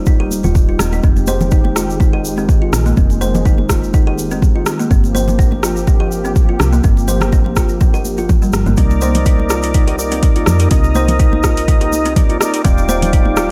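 A soft-attack sawtooth pad, detuned and smoothed by chorus, opens this afro house excerpt alongside a round, woody FM bass, both pumping against the sidechain in C minor at 124 BPM. Almost at once a deep, up-front electronic kick arrives with a ringing kalimba, whose hollow, thumbnail-plucked arpeggios carry a vintage 12-bit sampler grit and digital delay, plus high-tuned, damped congas sitting close and dry in the background and a grainy egg shaker. From 0.8 seconds a tape-tinged deep house kit adds metallic hi-hats and rim clicks, and the 16th notes swing gently at 54%. The harmony moves from Eb through Fm9 and Gm7 to Cm9, where at 8.8 seconds a clean tonewheel organ enters with chorus-vibrato stabs echoed by digital delay. The mood is earthy and spiritual, with a faint mains hum beneath the studio reverb as the passage settles on Ebmaj7.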